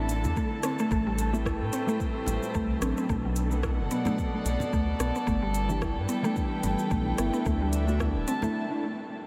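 Drenched in a huge, dreamy reverb, this hypnotic, meditative organic downtempo fragment swings gently in 4/4 as a round analog bass pumps beneath floating chamber strings, a dark, clean electric guitar with chorus and analog delay, a woody mallet-like synth pluck playing arpeggios from 0.4 s, a breathy wind-like noise texture, an electronic kit with crisp hats, rim click and shaker, very quiet close bongos and congas, and a deep layered electronic kick, before a short break at 8.5 s.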